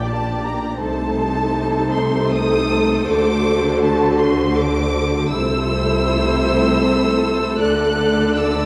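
A wet scoring-stage reverb surrounds this tender, lyrical excerpt from a slow romantic movement for string orchestra, moving at 79 BPM in a rubato 3/4. High above, a dark, woody violin section carries the melody, while a rich second violin line and a smooth-topped viola section fill the middle with soft-attacked, expressive bowing. Underneath, cellos sliding with portamento and a warm double bass section anchor the harmony from Gm/Bb through D7 before settling on D, every section singing with vibrato.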